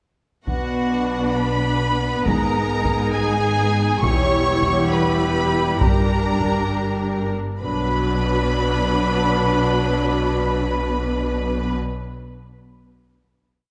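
Dark and heroic, this short cinematic orchestral cue in 6/8 moves at 68 BPM in B harmonic minor, with a close, vibrato-rich violin section carrying the melody as a lush, distant second violin section doubles the tune at the octave, expressive violas with portamento and distant, roomy French horns hold sustained chords in the background, a mellow solo trumpet adds stabs, woody cellos and double basses sustain the bass line, heavy single taiko strokes drive the theme until 7.0 seconds, and the ensemble settles onto a final B minor chord at 7.6 seconds within a wet scoring-stage reverb.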